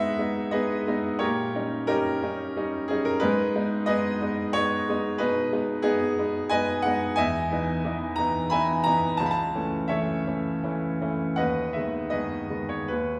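A brilliant, woody upright piano carries this stormy, brooding romantic character piece alone in G# minor, moving in a rubato 3/4 between 68 and 95 BPM through chords such as G#m, D#7/A#, Emaj7 and A/C# across a range from C#2 to B5, all set in a wet recital hall reverb heard from further back in the room in a fragment cut from a longer work.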